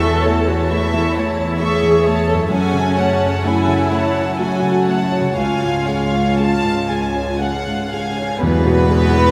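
Floating, sul tasto violins sing a longing melody over a second violin line, lush woody violas, an intimate concert grand piano with audible action noise, quiet ringing harp arpeggios and a pure, far-off cello bass in this moving, rubato cinematic orchestral fragment in 3/4, bathed in a vast cathedral echo, with a dark cymbal swell and tam-tam entering at 5.4 seconds and a mellow, distant French horn section adding sustained chords from 8.4 seconds.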